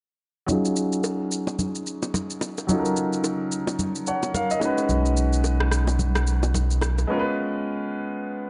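Deep and soulful, this amapiano fragment is cut from a longer piece and rides a swung 4/4 groove. A warm concert grand piano carries the accompaniment, natural and up front with a strong bass register, while a low-pass filter sweep runs across its whole part. Electronic shaker and rim click supply a produced drum pulse, and bright, close, dry congas and bongos add acoustic percussion. A full sub bass of sine and triangle tones, doubled at the octave, arrives at 4.9 seconds with a fast attack and a sustained, prominent presence. At 7.1 seconds the drums, percussion and bass drop out for a break, leaving the piano alone until 8.5 seconds, while the harmony moves from Ebm11 through B69 to Db7. The production is dark, with a light, small-room reverb.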